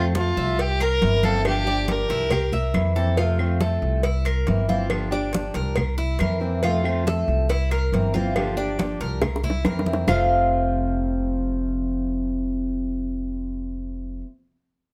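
A lightly reverberant, relaxed and sunny Cuban son and guajira excerpt in F major at 139 BPM, where an up-front, earthy bowed violin with light vibrato and plate reverb sings the melody only until 2.8 seconds, over a fingerpicked steel-string guitar with fresh strings, a metallic double-strung tres playing arpeggios, and a dark, woody pizzicato upright bass cycling through F, C7 and Gm7, while hard-hand congas, tight high-tuned cowbell and bongos, and distant claves drive the groove to a drum fill ending at 10.1 seconds.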